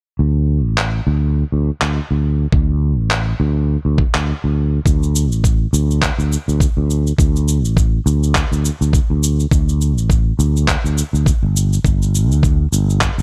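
Sunset chillout at 103 BPM in 4/4 with a swung sixteenth feel and a relaxed, warm mood, this short cut opens on a growly, punchy fretless electric bass sustaining low between G1 and D2, joined by gritty, compressed sampler-style handclaps and cabasa at 0.8 seconds and a thumpy, up-front electronic kick at 2.5 seconds, all in a dry, close sound with little reverb.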